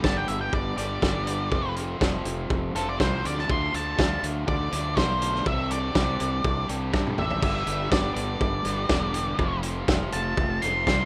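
Indie rock excerpt with a bittersweet, moody feel, where a dark octave-fuzz lead guitar solos over a crunchy, double-tracked overdriven rhythm guitar riff, a round fuzz bass and a gritty, saturated drum kit sitting up front with a punchy kick, all in a rough home-demo mix with studio reverb and a drum fill at 6.9 seconds.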